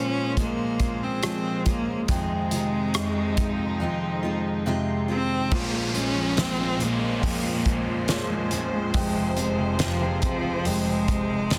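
Longing and melancholic, this pop ballad moves at a slow 70 BPM in Bb minor, cut from a longer piece. A rich, close cello carries the melody up front with bowed vibrato, while a polished grand piano plays the accompaniment and a bright, full-bodied jumbo acoustic guitar picks arpeggios in the background. Behind them, a studio string section holds sustained chords with a reedy, gut-string period tone and a smooth top. A loose indie drum kit enters at 0.4 seconds, up front, with a punchy kick, fat snare, rim click, hi-hat and dark crash cymbals in a pumping room sound. At 5.5 seconds an electronic downlifter joins as the harmony returns to Bbm7 before settling on Fm, all within light reverb, a small room ambience and a dense, heavily limited modern master.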